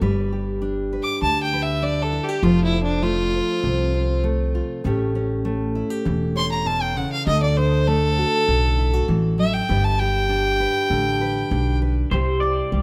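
Sunny and heartfelt, this honky-tonk and classic country excerpt moves at a straight 99 BPM in 4/4, with a clear, earthy fiddle carrying the melody from 1.0 seconds over a full-bodied, picked steel-string acoustic guitar and a growly, thumpy upright bass through a G, F, A7, D chord progression in light reverb, before a bright, twangy electric guitar through a small old amp, bathed in lush chorus and tape echo, slips in at 12.1 seconds as the harmony turns to C.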